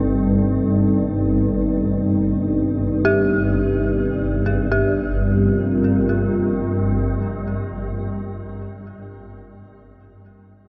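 A cavernous, dark wash of reverb surrounds this short cut from a longer dark ambient drone piece in G minor, drifting in free time with an unsettling mood. A swarming, granular drone holds the low register from G1 to G2, its detuned sine tones slow to bloom and long to fade, until it drops away at 8.0 s. Above it, a deep, moody analog pad sustains sawtooth-and-triangle chords with a sub octave, thickened by chorus and a shimmering reverb, moving from a rootless F over G to G minor at 4.7 s. An eerie, inharmonic FM bell, detuned and mellow, plays arpeggios between G4 and A4, each note striking quickly and decaying through chorus, delay and shimmer reverb. The pad ends at 8.4 s, leaving the bell to ring on alone until 10.7 s.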